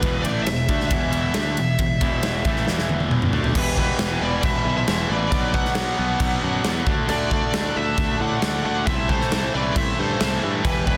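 Heavy, aggressive hard rock opens with a punchy, up-front big-room drum kit with bright cymbals, a picked electric bass, two overdriven riffing electric guitars in the background and a smooth, overdriven lead melody, and after a drum fill at 2.7 s the music shifts at 3.6 s into an Em, Bm, D, Am/C progression as a dark octave-fuzz lead guitar with tape echo adds a second line and a very quiet, double-tracked tight distorted guitar joins on riff, all in a dense, heavily limited modern master with light studio reverb.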